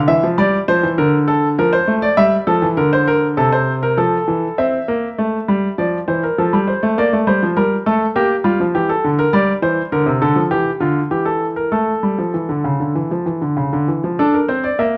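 A clear concert grand piano opens alone in a lively, stately baroque-style two-part invention in classical style, set up front with a deep bass and a smooth, vintage character. Close, detailed microphones catch the playing inside a moderate recital hall reverb, and around 4.6 seconds the music moves into a new section whose harmony darkens from 9.3 seconds. This passage, cut from a longer piece, comes to rest on an open chord at 14.2 seconds.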